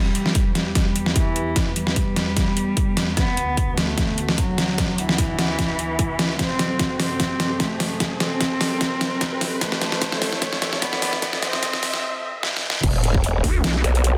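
A single bowed cello, dark and woody with vibrato and portamento, opens this chaotic, heavy wobble dubstep excerpt in E minor, its line softened by a low-pass filter, trailed by delay and shaped by a filter sweep. Beneath it a thick, detuned sawtooth unison pad sits in the background with chorus, phaser and sidechain pumping, carrying the chords Em, Bm/D, F#dim and Am. A background riser climbs through the build-up, while an up-front, overdriven drum kit with a deep snare, metallic hats, crash cymbal and finger snaps plays fills over a punchy, tape-warm electronic kick at 149 BPM in a swung, half-time 4/4 feel. The drop lands at 12.8 seconds on an E5 chord with an impact and sub drop, as a growling, saturated growl bass enters up front, bright with chorus and overdrive. At 13.4 seconds a nasal, resonant vowel-sweep wobble bass joins briefly. A lush hall reverb and a dense, heavily limited modern master give the cut a big, aggressive finish before it breaks off.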